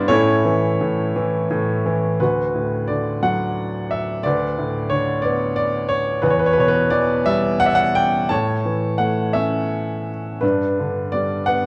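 A dark, softly reverberant recital-hall sound frames this short, peaceful passage cut from a longer classical piece, where a clear, up-front baby grand piano with long, natural sustain plays alone in a lyrical, rubato 6/8, its harmony moving through D6, Bm9/D, Em, A and G across roughly 11.7 seconds.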